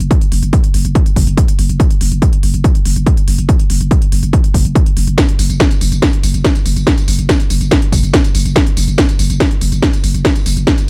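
Driving peak-time techno at 142 BPM in straight 4/4, this intense excerpt is tuned to A4 = 439 Hz and pairs a heavy, up-front electronic kick drum with a layered techno kit of cracking snare, smooth hi-hats and tambourine, both carrying a tape-warm small-room character. Underneath, a growling, buzzy 808-style bass sits around F#1 with a fast attack and decaying tail, shaped by tube saturation, sidechain pumping and a low-pass filter. The mix is dry, with little reverb.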